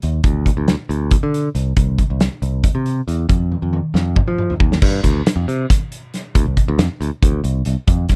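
A loose indie drum kit sits up front in this short math rock and midwest emo fragment, its acoustic sound caught in a small, pumping room with a medium-tuned snare and a tight kick beneath crash cymbal, hi-hat and toms. Alongside it, a modern picked electric bass plays directly and brightly between C2 and F3, also placed up front. The pair moves in a restless 7/8 at 275 BPM counted in eighths, with a straight feel and a wistful edge. A drum fill runs from 3.5 to 4.8 seconds, carrying the music into a new section that lasts until the cut at 8.2 seconds. The mix is dry, with little reverb.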